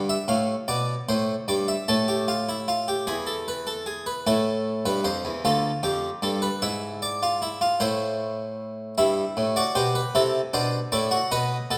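Driving yet contemplative, this short passage, cut from a longer piece, is a baroque-style three-part fugue for solo harpsichord in A minor, moving in a straight 6/8 at 51 BPM counted in dotted quarters and tuned to A4 = 439 Hz. The Italian-style harpsichord sits up front, close-miked and dry in its own sound, with a full, plucked, brilliant tone enriched by octave strings, and its lines span from D2 up to B5. Around it, a wet scoring-stage reverb with a 1.6-second decay gives the room a sense of space. The opening phrase unfolds over Bm7b5, Esus4/A and E, arriving at Am as a new section begins at 4.3 seconds. From there the harmony passes through Bm7b5/D, E7/G#, Am and Em/G before settling on F#m7b5 as the passage ends at 11.8 seconds.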